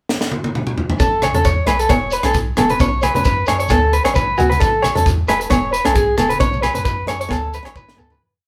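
A band playing live in one room fills a moderate studio reverb in this short, joyful highlife piece in A major, moving at 133 BPM in 4/4 with a light swing on the sixteenths. A tight funk drum kit opens alone with a fill in the pickup bar, its high-tuned snare and tight kick sitting up front in a natural, small-room sound. At 1.0 seconds the groove arrives: an electric guitar through a small old amp picks a slightly broken-up, lo-fi arpeggio ostinato up front, while a fingerpicked flamenco guitar with fresh strings adds its own ostinato beneath. A punchy sub bass with a pitch-drop attack plays a deep, sustained, syncopated figure, and a grainy shekere joins in the background. From 1.2 seconds, ringing agogo bells holding a low bell time line and damped, low-tuned congas fill out the percussion. The chords cycle through A, E5, Bsus2 and D before a fade-out begins at 6.4 seconds, with a last drum fill closing the piece.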